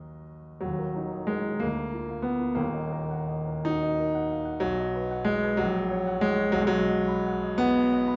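Classical romantic character piece for solo grand piano in 6/8 with uneven, rubato-shaped beats, its stormy yet bittersweet mood carried by a polished, up-front piano that spans from deep bass to high treble and moves from minor harmonies toward brighter major chords around 4.6 seconds, all set in a wet recital hall reverb with a dark, warm production, cut from a longer piece.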